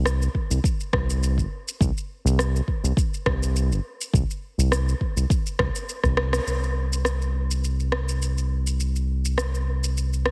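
Hypnotic and meditative, this organic downtempo fragment at 103 BPM in 4/4 with a light 16th-note swing rests on a round, dark analog bass with tube saturation and ring-modulated, evolving sustained tones between G1 and C2, set up front alongside a layered electronic rim click and shaker. A deep electronic kick drum joins at 0.3 seconds and drops out at 6.1 seconds, in the middle of a drum fill that, together with a band accent at 6.3 seconds, marks the shift into a new section at 6.5 seconds. The whole is cut from a longer piece and given a heavily compressed, radio-like sound with light reverb.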